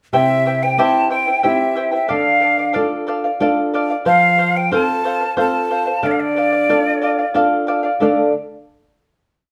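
In a straight 3/4 at 91 BPM, this festive, earthy Andean folk piece in D minor features an up-front cane quena, breathy and soft in attack with vibrato, carrying a motif-based melody in period phrases until 7.4 s, over a shimmering, double-strung charango that fingerpicks and strums open chord shapes and a thumb-plucked flamenco guitar laying down oompah bass notes and chord figures through C, Dm, F and Dm, the ensemble playing together in one room under a wet studio reverb before a final chord at 8.0 s.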